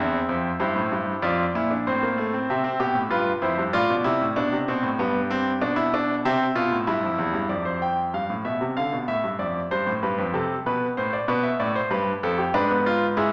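A polished, up-front concert grand rings out in a reverberant recital hall, its brilliant treble and deep bass carrying through the lingering reflections. This solemn, serious baroque-style three-part fugue moves at 96 BPM in a straight 4/4 in F major, and the solo piano plays throughout this 13.3-second passage cut from a longer piece. Around 7.5 seconds it shifts into a new section, where the harmony rests on F before a stretch of bare counterpoint, then settles on E minor and an E7 over G sharp near the close.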